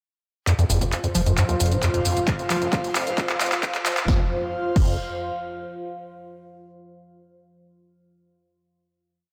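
Driving peak-time techno at 133 BPM in straight 4/4, relentless and industrial, packed into a short whole piece that builds from 0.5 seconds and lands on a final chord at 4.1 seconds. A squelchy, gritty acid bass carries the riff, a resonant square-wave line with accents and slides looping over 12 steps that drift against the bar, swept by a filter through the build and fed through analog delay and sidechain pumping. Beneath it a saturated triangle sub bass holds a low F1 rumble between the kicks, while a punchy, tape-warm analog drum machine runs a fill across the build with shaker, closed and open hats, mid tom, clap, snare and crash, its snare, clap and hats set in a short room. The four-on-the-floor electronic kick only arrives at 2.3 seconds, sitting up front. Above, a deep, moody detuned drone pad with chorus and its own reverb stays dark in the background, and an airy, breathy pad with a noise layer, phaser and chorus shifts chords slowly through to the end, all set in a dreamy mix soaked in lush hall reverb.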